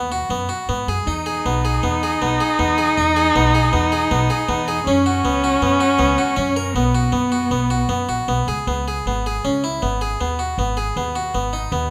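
In a straight, uneven 5/4 at 158 BPM, this pensive yet urgent piece of contemporary chamber music in C# minor sets an airy, bright harpsichord playing arpeggios up front over a woody, thumpy pizzicato upright bass. A rich, focused bowed viola with vibrato and a smooth top enters at 1.1 seconds as a second line and stops at 8.5 seconds, as the harmony shifts from Emaj7 and F#sus4 toward C#7sus2 and G#m7. The trio sits in the moderate reverb of a scoring stage, and the excerpt is cut from a longer piece.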